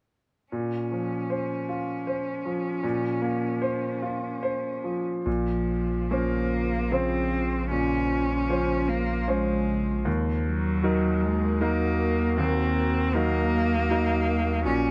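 Longing and melancholic, this neoclassical excerpt for piano and strings drifts in 3/4 with a rubato feel around 69-81 BPM in Bb minor, moving from Bbmadd9 to Ebm at 10.1 seconds. A bright, brilliant grand piano and a rich, smooth bowed cello with vibrato sit up front from the start, the cello carrying a second line over the piano's accompaniment. At 5.3 seconds a deep, punchy sub bass enters, and at 5.9 seconds a warbling, nostalgic lo-fi pad with chorus and phaser adds mellow sustained chords in the background, all within a moderate studio reverb.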